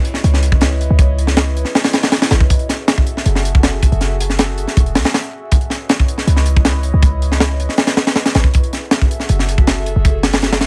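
Raw and atmospheric, this drum and bass and jungle excerpt puts a crisp, acoustic fusion drum kit up front, with a punchy kick and high-tuned snare in a pumping small room; at 0.2 s a deep, boomy 808-style bass with tube saturation joins, while a warbly, nostalgic, lo-fi pad of detuned sawtooth and triangle tones sustains C#m9 and F#m9 chords through chorus, phaser and vintage 12-bit sampler grit, all beneath a layer of vinyl crackle.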